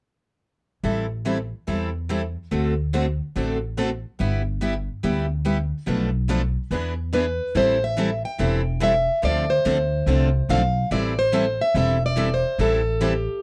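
Bittersweet yet fiery, this swinging acoustic string jazz clip sets two bright, picked steel-string guitars and a woody, growly pizzicato upright bass in a dry, close 1970s-style studio sound with light reverb, before a warm, plugged-in parlour guitar takes up the melody at 7.1 seconds.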